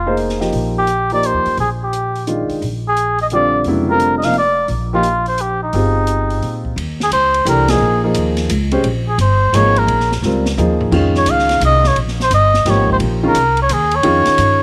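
A swinging 3/4 at 173 BPM carries this searching, hypnotic modal jazz excerpt, where a veiled, breathy cup-muted trumpet leads over growly pizzicato upright bass, woody upright piano and an open drum kit with dark cymbals and a boomy kick in a small room, settling into Eb mixolydian at 6.8 seconds, with a band accent at 7.6 seconds and a drum fill at 10.2 seconds.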